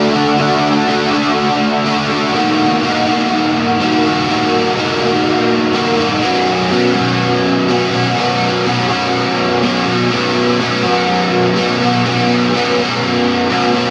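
A biting, overdriven electric guitar, picked, double-tracked with an ensemble chorus and set up front, plays alone throughout this hazy, dreamy rock passage at 124 BPM in 4/4, moving from D to D#m at 2.3 seconds and Bsus2 at 6.2 seconds while a huge ambient reverb with a 4.0-second tail soaks the whole mix.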